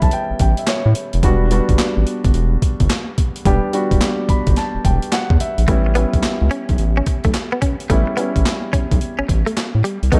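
Punchy and bouncy, this swung new jack swing R&B excerpt rides a gritty, overdriven breakbeat kit of thumpy kick, snare, hi-hat and handclaps, with a deep, round analog bass up front beneath chords moving from A7 to Em7 and back. An intimate grand piano with audible action noise adds fills at the start and again from 4.0 to 5.7 seconds. At 5.7 seconds a bright, twangy clean electric guitar enters with a picked riff through analog chorus, all set in a dark ambience.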